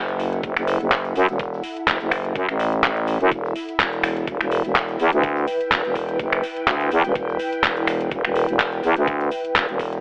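A thick, growling FM bass opens this gritty, swaggering bass house excerpt up front with tube saturation and sidechain pumping, joined at once by a mellow, ethereal pad drifting in the background through chorus, phaser and its own reverb, a garage kit of finger snaps, handclaps and metallic hi-hats, a very quiet grainy egg shaker and a tape-warm knocking electronic kick from 0.4 seconds, all over an F#m7 that shifts to Em at 3.3 seconds inside a lightly reverberant, telephone-filtered sound.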